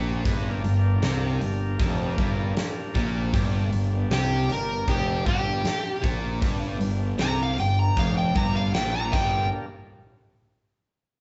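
Heard through a live, one-room sound with large studio reverb and a rolled-off top end, this brooding, heavy slice of blues rock and southern rock is cut from a longer piece. A double-tracked, overdriven electric guitar riff with spring reverb sits up front over a fuzz-laden picked bass, a big acoustic drum kit with a fat snare and punchy kick, and a gritty tonewheel organ holding sustained chords through a slow rotary speaker in the background. At 4.1 seconds an overdriven slide guitar enters up front, carrying the melody.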